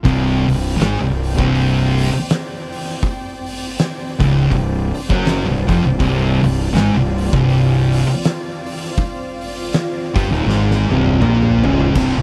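Stoner and doom metal at 81 BPM in 4/4, with a loping swing on the eighths, this short cut from a longer piece feels hypnotic and sludgy, tuned slightly below standard pitch. Two thick fuzz guitars grind out the riff from the very start, one set back in the background, while a growly, overdriven fingered bass sits up front with a punchy, direct-and-amped bite in the low register. An oversized, low-tuned acoustic drum kit enters at 0.1 seconds, its fat snare, punchy kick, hi-hat, toms and crash ringing in a bright stone room with a pumping, gritty saturation. Behind it all from 0.7 seconds, a calm organ-like drone holds detuned, sine-toned sustained chords with slow attacks, long releases, ensemble chorus and its own reverb, hovering in the background. A drum fill rolls in at 10.5 seconds, and the overall mix stays dry and close, with a power chord on C.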